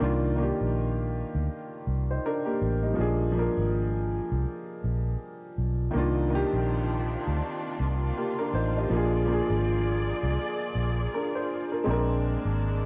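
Lo-fi hip hop at 81 BPM in C minor with a swung, nostalgic and melancholic feel, where a woody upright piano with long sustain and a round, foam-muted electric bass sit up front over Cm11 and Bb7 chords, veiled con sordino strings with vibrato and a soft attack enter at 5.9 s, and the whole fragment, cut from a longer piece, carries the warble and pitch drift of worn cassette tape in a small, lightly reverberant room.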